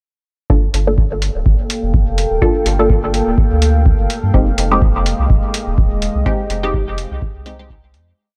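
A dry, close-sounding mix opens this brief, hypnotic and meditative dub techno piece at 125 BPM with a light 16th-note swing, as sparse, muted sawtooth chord stabs treated with phaser, cassette-tape colour and dub echo sit up front, moving one shape in parallel from Gm9 to Fm9 at 4.3 seconds. A clean sine sub bass plays a syncopated riff under a tape-warm four-on-the-floor kick and pitched-down, overdriven closed hats, while a moody, detuned pad with slow attack, chorus and built-in reverb enters at 1.6 seconds. The stabs, pad and sub bass pump against the kick, and the whole groove fades out from 5.6 seconds.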